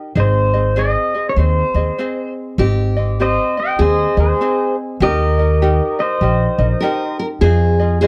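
A dry, close studio sound in a 1970s style, with a small room's reverb, frames this dreamy, languid Hawaiian excerpt, cut from a longer piece in Ab major and tuned to A4 = 435 Hz. At a relaxed 99 BPM in 4/4 with a lilting swing on the eighths, a light, fingerpicked ukulele sets the accompaniment, joined at 0.2 seconds by an upright bass and an electric pedal steel guitar. The pedal steel carries the melody up front with a twangy, clean, compressed tone, played with fingerpicks, gliding on slide and blooming through volume swells. Also up front, the pizzicato upright bass sounds woody and growly on its steel strings. At 2.6 seconds a full-bodied, dark dreadnought acoustic guitar, fingerpicked, adds a second line as the harmony moves from Ab through Abmaj7 and Eb toward Fm7, and the pedal steel falls away at 7.2 seconds.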